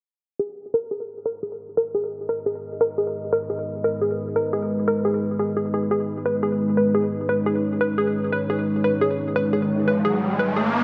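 A warbly, dusty pluck stands out from 0.4 seconds, spinning G# minor arpeggios with a lo-fi, mellow character, softened by chorus and trailed by delay while a filter sweep moves across it. This brief drum and bass excerpt is cut from a longer piece at 174 BPM in 4/4, holding on a single G#m chord with a mechanical, tense mood. From 2.5 seconds a deep, dark ambient pad of detuned sawtooth and sine layers with a sub octave fades in through a slow attack, sustaining moody chords with a long release, chorus and its own built-in reverb. An electronic riser enters at 9.4 seconds and climbs toward the cut at 10.8 seconds. The parts sit up front in a lush hall reverb, and a low-pass filter shades the whole mix.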